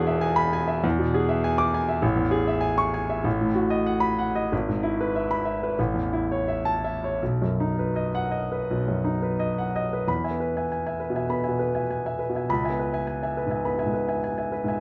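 Hopeful and warm, this short excerpt from a romantic classical character piece features a smooth, vintage-toned grand piano, up front in light reverb, playing alone with rubato in 4/4 across a span from E1 to D6 as it moves through E7, Amaj7 and B7/A before shifting into a new section at 10.1 seconds that turns toward C#m7.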